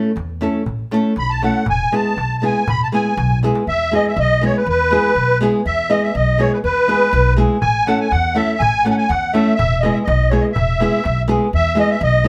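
A reedy musette accordion sits up front and carries the melody from 1.2 seconds, its wet tuning giving a shimmering, vintage, band-limited glow that suits this wild, exuberant Balkan wedding-band folk tune in a straight two-beat metre. Beneath it, a small, woody nylon-string guitar with old strings is fingerpicked as accompaniment, also placed up front. An upright bass played pizzicato on steel strings adds a dark, thumpy low end. A clay-shelled darbuka with a natural skin sounds close and dry yet stays in the background, dropping out after a drum fill that ends at 3.7 seconds and returning at 7.6 seconds. The harmony moves between A and E, and the band, playing live together in one room with moderate studio reverb, keeps speeding up throughout this fragment cut from a longer piece.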